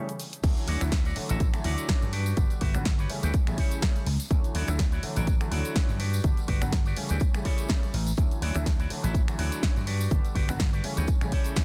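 A dense, heavily limited modern master with digital ambience carries this sunny, joyful excerpt of filtered disco house at 124 BPM in D major. A clear baby grand piano, treated with phaser, 12-bit sampler grit, sidechain pumping and a low-pass filter, plays accompaniment over Dmaj9, Gmaj7 and A7 beside a bright, twangy envelope-filtered electric guitar riff. Meanwhile a house drum kit with punchy snare, snaps, shaker, hi-hat and crash, a dry tambourine in the background, an amped vintage slap bass and an up-front electronic kick drive the drop from 0.4 seconds, which closes with a clean electric guitar fill at 11.1 seconds.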